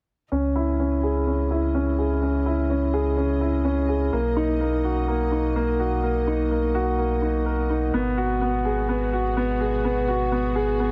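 A concert grand piano stands out at the front, playing a riff through a low-pass filter and digital delay, its tone boxy with a long sustain and a deep low end, while a filter sweep runs across it from 0.3 to 10.9 seconds. This is melancholic, intimate electronica at 126 BPM in 4/4 with a straight feel, set in C# dorian and cut from a longer piece. Beneath the piano, a round, sine-like sub bass holds the low register up front, with a fast attack and a mellow, sustained body. Far in the background, a dark studio string section fades in over sustained bowed chords, its woody ensemble sound carrying light vibrato and a soft attack. The harmony moves from C#madd9 to Bmaj7 at 4.1 seconds and G#m7 at 7.9 seconds, all bathed in a huge ambient reverb with a long 5.2-second tail.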